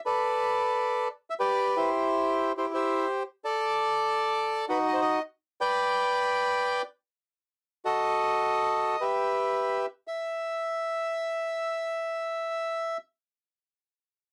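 Tango in free time and E minor, tuned to A4 = 441 Hz: in this tense, melancholic excerpt a lone bandoneon plays up front from 0.1 to 13.0 seconds, reedy and airy between D#4 and G5, moving through Em, C, B, G and F#m6 inside light reverb and a dark production.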